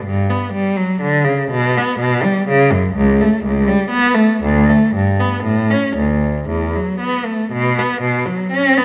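In a flowing, rubato 3/4 at 112-130 BPM, this dance-like baroque-style suite movement in D major features a single bowed solo cello, clear and focused with vibrato and placed up front, ranging from C#2 to C#4 across the full 8.8 seconds of this excerpt from a longer piece, set in a moderate recital hall reverb.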